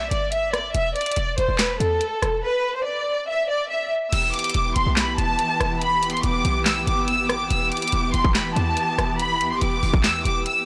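Dark and brooding, this short excerpt of half-time trap hip hop moves at 142 BPM in E minor, tuned slightly flat at A4 = 439 Hz. A lush, focused violin section carries the melody up front from the start, its bowed ensemble tone rich with vibrato and trailed by a digital delay. Beneath it, a punchy, tight 808-style bass with a sine core, a noise layer and a fast attack decays quickly in the low register, while an electronic trap kit sits up front with a hard-clipped kick, sharp snare, bright hi-hats, handclaps, rim clicks and crash cymbals, re-recorded in a small room. At 4.1 seconds a clear symphonic string section enters with smooth, even sustained chords and light vibrato, filling out the harmony as the progression returns to E minor after a brief turn to E7 with the third dropped. The whole mix is blown-out and overdriven, with light reverb and a small room ambience.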